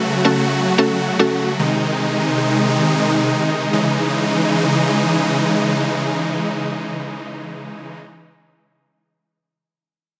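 Huge, detuned supersaw chords sit up front and sustain throughout this driving, energetic pop passage in C# minor, which moves in free time and is cut from a longer piece. A woody, percussive mallet-like synth pluck with chorus plays accompaniment only from 0.0 to 1.5 seconds, over chords that move from F#m to G# before settling on C#madd9 at 3.7 seconds. A lush hall reverb surrounds the parts, and the dense, heavily limited master gives the sound a modern polish.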